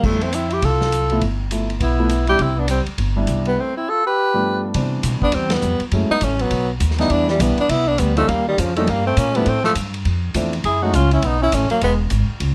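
A relaxed, swinging small-group jazz excerpt opens with the whole band at once: breathy tenor saxophone carrying the melody up front, a growling trombone on a second line, concert grand piano comping, upright bass and a vintage drum kit. The tenor has a soft attack, vibrato and scooped notes, while the trombone sits lower in the mix with a bright, raspy, gritty edge and its own scoops, close-miked so every rasp comes through. The piano is polished and present with a deep bass register, and the pizzicato upright bass on gut strings sounds woody and thumpy near the front. The drums, from a studio room, are dark and smooth, with dark cymbals, a medium-tuned snare and a punchy kick under a rolled-off top. A band accent lands at 5.5 seconds. The piano drops out at 10.9 seconds, the saxophone at 11.9 and the trombone at 12.0, leaving bass and drums to finish the cut in light reverb.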